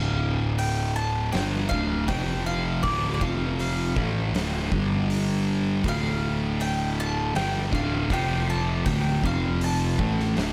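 Light reverb surrounds this sludgy, hypnotic stretch of stoner and doom metal in D minor, crawling at 80 BPM. A thick, double-tracked fuzz guitar sits up front with a distorted riff over a round, overdriven picked electric bass, while an oversized low-tuned drum kit with a fat snare and punchy kick enters at 0.6 seconds from a bright stone room. High above, a bowl-back mandolin picks a melody on its double strings over chords of D minor, F5, G5 and D5.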